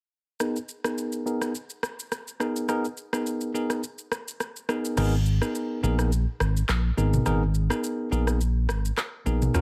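A bright, bell-like tine electric piano carries a low-pass filter sweep over an Abmadd9 chord in this smooth, hypnotic afrobeats fragment at 105 BPM with a gentle sixteenth-note swing, backed throughout by an electronic, produced afro-pop kit of crash, handclaps, rim clicks, shaker and toms. At 5.0 seconds a dark, round, punchy fingered electric bass enters up front just as the kick drops out, all set in a digital ambience.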